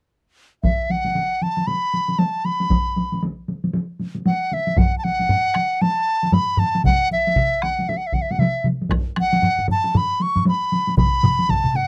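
Swung sixteenths at 116 BPM in 4/4 drive this ceremonial, driving cut from a longer traditional Japanese taiko ensemble piece, set in B suspended pentatonic and tuned to A4 = 443 Hz. Two taiko ensembles start together at 0.6 s: one struck with hard sticks and carrying a vintage, band-limited edge up front, the other pounded with heavy sticks and sounding close and dry. A third heavy-stick taiko ensemble joins at 4.8 s, heard in a live room, and solo taiko drums played with heavy sticks arrive close at 6.8 s to thicken the ceremonial pulse. Above the drums, a bright large dizi carries the melody between E5 and C#6, its bamboo tone pure yet edged by a buzzing membrane, shaped with vibrato and a soft attack, and placed close-miked and up front. The recording has a dry, close 1970s-style studio sound with little reverb.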